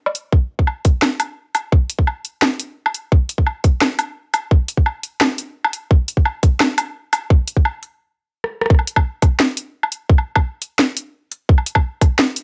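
A light reverb and the character of a home cassette recording frame this short drum and bass fragment, cut from a longer piece and running at 172 BPM in 4/4 with a half-time feel. The mood is heavy and tense, carried entirely by two up-front, layered, electronic percussion parts. An electronic kick drum, tight and produced, sits alongside a produced drum kit of hi-hat, rim click, woodblock and a cracking snare. The opening stretch works as a build-up, then everything briefly stops at 8.0 seconds before a quick drum fill leads into the drop at 8.7 seconds. From there the kit and kick push on through the final section until the fragment ends.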